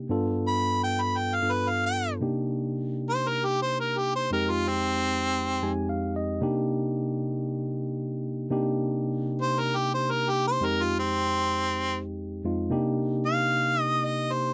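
A straight 4/4 groove at 114 BPM sets up this smoky, soulful minor-key blues in C minor, cut from a longer piece. A clean tine electric piano, heard through its built-in speakers and placed up front, carries the accompaniment throughout, moving from an opening G7 into a cycle of Cm7 and Fm7. A bright, punchy harmonica takes the solo melody from 0.5 seconds, its overdriven, close-miked tone marked by vibrato and a pop-style phrasing that sits up front in the mix. The electric piano steps forward with a short fill at 5.4 seconds, and the harmonica returns at 9.4 seconds to carry the melody on. The sound is dry and intimate, a close 1970s-style studio recording with just a light touch of reverb.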